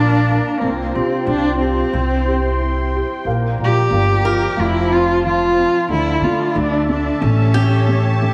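An acoustic folk-pop ballad fragment with a nostalgic, tender mood: a dark, boxy bowed cello carries the smooth vibrato melody up front beside a woody pizzicato upright bass, while a soft, felt-muted upright piano with audible action noise and analog chorus plays an intimate accompaniment. An airy, detuned sawtooth pad with a noise layer, slow attack and filter swell sustains chords over a progression moving from Bb through Csus4 and C to F, Dmadd9 and A7. After a brief touch at the very start, a bright picked acoustic guitar with a swing feel, finger squeak and analog delay returns from 4.2 s to add arpeggios, all set in a dreamy, reverb-soaked plate space.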